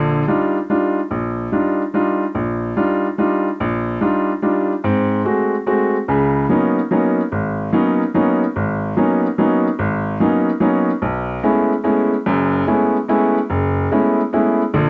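A clear, up-front baby grand piano plays alone with long, open sustain across this hypnotic jazz waltz fragment in Eb major at 146 BPM in 3/4 with a swung eighth-note feel, moving from Ebmaj9 and Ab7b9 into suspended Db13sus4 and Cb13sus4 harmonies after 6.1 seconds, all softened by a dusky cassette home recording and a wet studio reverb.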